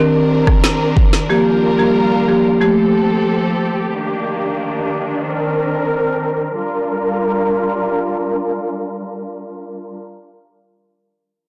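Blown-out and overdriven with plate reverb and small-room ambience, this bouncy, hypnotic dancehall piece in G minor at 91 BPM pairs a boxy marimba with medium mallets, heard until 3.8 s, with a lush, bowed symphonic string section holding chords throughout with vibrato and a soft attack, both pumping under sidechain and a low-pass filter, while an electronic afro-pop kit with a deep kick, rim click and a woody, softly clipped snare plays only from 0.5 to 1.3 s.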